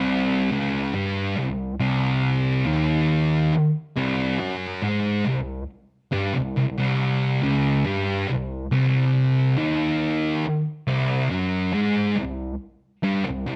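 Ominous and hypnotic, this metal fragment rests on a lone thick fuzz guitar, electric, picked and double-tracked, playing up front from 0.0 to 13.6 seconds in a low, distorted register, framed by a moderate large-studio reverb and a dark, warm production.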